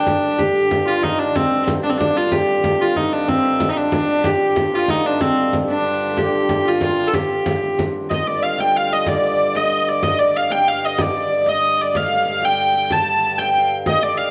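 A rich, smooth hurdy-gurdy sits up front and carries the melody through this ancient, mysterious medieval dance in 6/8, cut from a longer piece. A shimmering hammered dulcimer plays a second line alongside it, a reedy, breathing pedal harmonium holds a low drone, and a frame drum played with hard hands enters at 0.1 s. The sound sits in a wet echo chamber with studio ambience, and the music moves into a new section at 8.1 s.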